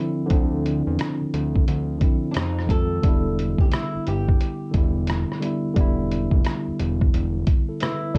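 A dark, softly reverberant production with a hazy, nostalgic glow opens this short cut from a longer lo-fi hip hop piece, moving at 88 BPM in 4/4 with a swung sixteenth-note feel. A worn, slightly out-of-tune tine electric piano sits up front from the first moment, its mellow tone dulled by cassette tape character and a low-pass filter as it outlines Dm9 before shifting to Fm7 and Em7. From 0.3 seconds a sampler-style drum kit of hi-hat, rim click and a thumpy kick arrives, compressed, pitched down and muffled as if re-recorded in a small room, and it is the most prominent part in the mix. Alongside it comes a fat analog bass, thick and saturated, blending detuned sawtooth and square-wave tones with a plucky filter, fast attack and sustained notes. At 2.3 seconds a fingerpicked acoustic flamenco guitar enters quietly with the melody, its rounded, filtered sound carrying audible finger squeaks.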